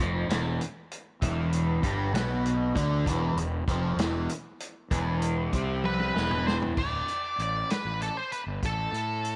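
Trippy, hypnotic psychedelic rock in a slow 6/8 at 65 BPM, cut from a longer piece, opens on a double-tracked, overdriven semi-hollow guitar riff through a phaser over up-front fuzzed bass and a vintage drum kit with dark cymbals and a punchy kick, until a drum fill at 5.8 seconds leads into a change of harmony at 6.8 seconds, where the riff drops out and a dark octave-fuzz lead guitar, entering at 5.9 seconds, carries a high melody to the end in light reverb.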